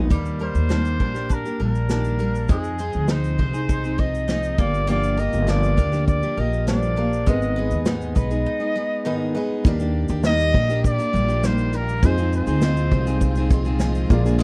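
Acoustic pop with an easy-going, carefree mood, where a warm trumpet with light vibrato and scooped notes carries the melody over a woody, thumpy pizzicato upright bass, a roomy unplugged drum kit played with bundle sticks, a picked steel-string acoustic guitar with finger squeak, mandolin arpeggios until 10.2 seconds, a dark, slightly detuned upright piano entering at 4.9 seconds with fills, and a lush bowed string section arriving at 9.6 seconds, all in a dry sound with little reverb.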